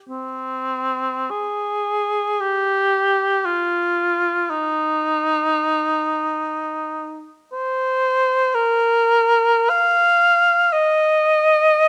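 In free time, this lyrical, nostalgic classical excerpt features an unaccompanied cor anglais, mellow and up front with vibrato, playing expressively between C4 and F5 from 0.1 to 11.9 seconds, captured by close, detailed microphones with light reverb and tuned to A4 = 439 Hz.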